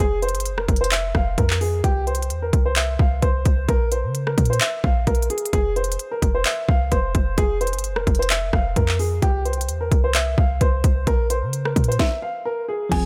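A half-time trap groove at 130 BPM in 4/4 drives this brooding, hard-hitting hip hop cut in F harmonic minor, with an up-front electronic kit of hard-clipped kick, sharp snare, crisp hi-hats, handclaps, rim clicks and crash under a deep, boomy 808-style bass with a sine-like fast attack. Over it, a worn, boxy baby grand piano with audible action noise carries the dark, intimate melody through a digital delay, moving between F5 and Bbm chords in a dry, close-sounding mix. A stop hits at 12.0 seconds, and a bright, bell-like tine electric piano surfaces at 12.9 seconds just as the clip is cut off.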